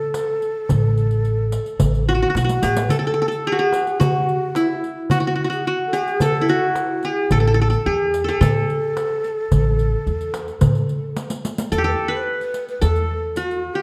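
A straight 4/4 pulse at 109 BPM, carried by a small, hard-handed clay darbuka and a close, soft-handed riq with dark jingles, drives this stately Arabic maqam ensemble excerpt in A maqam rast, where a bright-edged, fingerpicked qanun leads up front over a breathy, hollow end-blown ney with vibrato, while a woody, thumpy pizzicato upright bass drops out at 2.9 seconds and returns at 7.3 seconds, drum fills mark the section changes, the darbuka stops at 11.5 seconds, and a moderate recital-hall reverb surrounds the ensemble.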